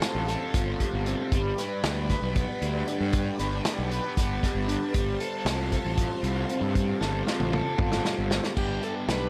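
An overdriven electric guitar riff opens this kaleidoscopic, hypnotic psychedelic rock excerpt in 7/8. The guitar is bright, picked, double-tracked and sent through a rotary speaker, and it sits up front beside an acoustic vintage drum kit with dark cymbals, a tight kick and a rolled-off top. A round, fuzzy fingered bass, driven hard and placed forward, joins almost at once. Behind them a phased string machine holds swirling sawtooth chords with a slow attack and ensemble chorus, drifting from F to G and then to F/G. A drum fill runs from 7.0 to 8.6 seconds, and at 8.6 seconds a buzzy, clean combo organ enters with a short melody as the harmony returns to G. A small room ambience surrounds the whole excerpt.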